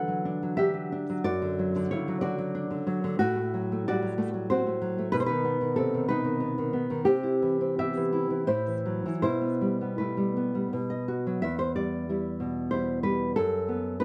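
A close, detailed recording in a moderate studio reverb puts a solo nylon-string guitar up front, its dark, woody tone carrying the dull edge of old strings and the roundness of thumb-plucked notes. This passionate, intimate romantic piece moves in 3/4 with a rubato feel between 79 and 97 BPM, settling into E minor from 3.2 seconds as chords such as F#dim/A, C and F#m7b5/A lead toward B. At 11.4 seconds a new section begins on Em before the short excerpt is cut off on a B7 chord over F#.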